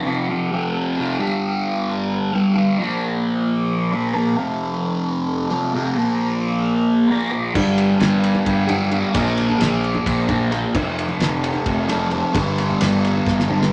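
Psychedelic rock in an odd 7/8 metre, dark and trippy in mood, taken from a longer piece. A double-tracked fuzz guitar sits up front and plays the riff alone from the start, its distorted, picked tone colored by a phaser as it moves through power chords on F, G and Bb. At 7.5 seconds an overdriven, fuzzy picked electric bass joins, direct and amped, and the cloth-damped drum kit and congas arrive with it. The kit is thuddy and rolled-off, with a fat snare, tight kick and dark crash and ride cymbals, while the high-tuned, ringing congas sit very quietly in the mix with hard, close hands. A small, wet room surrounds the band, and a drum fill at 13.3 seconds closes the passage.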